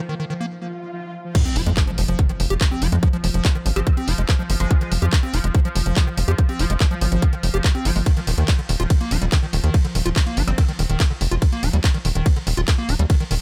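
A straight, driving pulse powers this intense psychedelic trance clip, cut from a longer piece. It opens on a pulsing, detuned gated texture holding sustained chords in the background, a barely audible deep, moody ambient pad, and a squelchy, resonant liquid acid bass riff colored by chorus, digital delay and sidechain pumping. After a short break at 0.5 seconds, an electronic swell rises into a drop at 1.4 seconds, where an impact lands as a tight, layered electronic kick arrives up front with a garage drum kit of crash cymbal, handclaps, warm hats and ride. A punchy, nasal sawtooth sequencer bass with a fast filter pluck anchors the low end from there, while a metallic, aggressive FM wobble bass flickers in the background around 3.8 seconds, treated with ensemble chorus, high-pass filtering and dub echo. The mix stays dry and close, with the kick and sequencer bass dominating.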